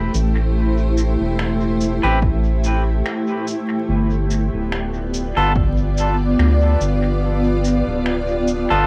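Ambient dub at 72 BPM in 4/4 with a lightly swung sixteenth feel, spacious and hazy, moving from Am7 to G7 in this short cut from a longer piece. A cloudy, detuned granular pad and a round, deep analog bass with tube saturation sit up front from the start, while muffled electronic cabasa and finger snaps drift through dub echo, and a punchy, overdriven electronic kick sits in the background from 2.2 to 5.7 seconds. Twangy clean electric guitar stabs enter at 2.0 seconds, low-pass filtered with cassette tape and dub echo, and the home cassette recording carries vinyl crackle and light reverb.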